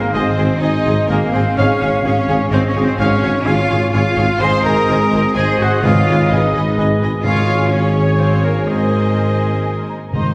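Adventurous and triumphant, this cinematic excerpt in Ab major moves at 127 BPM in 3/4, with a lush, vibrato-rich violin section carrying the melody over second lines from a clearer violin section, a clear oboe and an airy flute section, while ringing concert harp arpeggios and a very quiet viola section fill in the accompaniment, mellow trombones and warm French horns sustain chords, a solo trumpet adds stabs, a cello section, a woody double bass section and a tuba anchor the low end, and hard-mallet timpani enter at 5.8 seconds, all set back in a reverberant scoring stage.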